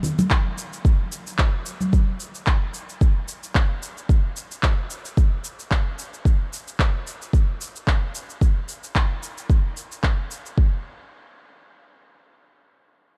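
A deep, layered electronic kick drum sits up front in this earthy, meditative downtempo piece, entering at 0.3 seconds with a tape-warm, produced weight and a touch of studio reverb. The groove moves at 111 BPM in 4/4 with a gentle swing on the sixteenths. Electronic cabasa and handclaps add a softer, tape-warm texture behind it, also dressed in studio reverb. Acoustic congas, played with hard hands in a small room, open the track and fall away by 1.9 seconds. The production is dark and warm, with little reverb overall, and the kick carries on until 10.7 seconds before the music moves into a brief new section of this longer work.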